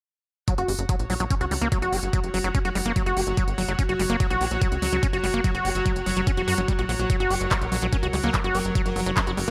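A driving straight 4/4 pulse at 145 BPM anchors this psychedelic trance passage in F# major, cut from a longer piece, with an up-front, knocking electronic kick and a techno kit of handclaps and smooth hi-hats, all entering at 0.5 seconds. A punchy, funky analog bass plucks beneath, its sawtooth, square and triangle waves wave-folded and filtered into short, decaying notes from 0.6 seconds. Above it, an overdriven acid bass riff squelches with gritty, resonant saturation and filter sweeps, pumping against the kick and trailed by delay. In the background, a rich, earthy chamber string section bows an ensemble texture with light vibrato from a distant vantage, also pumping with the kick, while a pulsing, tempo-synced gated texture slides in at 1.2 seconds with slow-attack chords softened by chorus and its own reverb. Light digital ambience surrounds the mix, keeping the hypnotic momentum focused and driving.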